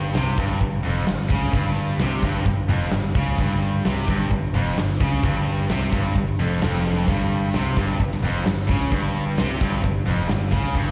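Two picked electric guitars open this driving, menacing hard rock excerpt at 130 BPM in straight 4/4, a biting overdriven one in the background and a tight, bright distorted one up front with slapback echo, riffing over a growly, direct-and-amped fingered electric bass on a C#maj7#11/E# chord, while a huge acoustic arena drum kit with a fat snare, punchy kick and hi-hat joins at 0.1 seconds, the whole band sounding like a live gig heard through the venue's PA in recital hall reverb.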